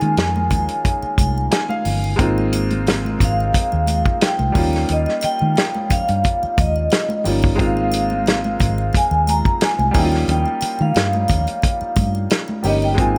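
A 4/4 groove at 89 BPM with a gentle sixteenth-note swing sets up this lush 1970s-style soul excerpt in Ab major, its mood warm and lush. A dry, mid-forward soul drum kit sits up front with a tight kick, a medium-tuned snare and hi-hat, its top rolled off, while a dark, round, foam-muted fingered electric bass anchors the low end from G1 to Eb3. A clear, worn baby grand piano with long sustain carries the accompaniment and plays a fill from 1.2 to 2.2 seconds, leading from an opening Eb9sus4 into the Ab6 and Eb7 changes that follow. Above it, a ringing, metallic vibraphone played with medium mallets and a fast motor vibrato sings the melody between Eb5 and Bb5. High-tuned, band-limited congas with soft hands and a shimmering triangle sit in the background, the congas dropping out at 12.8 seconds, all set in a light, small-room reverb.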